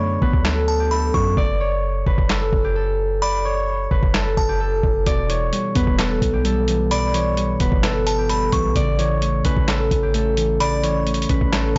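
A half-time trap groove at 130 BPM in 4/4 comes from a gritty, pitched-down boom bap sampler-style kit of thumpy kick, medium-tuned snare, hi-hat and handclaps, which enters at 0.2 seconds over a deep, boomy 808-style sine bass in this brooding, menacing hip hop piece. An up-front, fingerpicked concert harp carries the ringing melody over Bm7, F#m, Em and A, while a tinkling FM tine bell with chorus and tape echo adds a second line above. Muted, soft felt-like synth keys with chorus accompany, dropping out between 1.4 and 5.1 seconds, all within a blown-out, overdriven recording with digital ambience that tops out at 7.8 kHz.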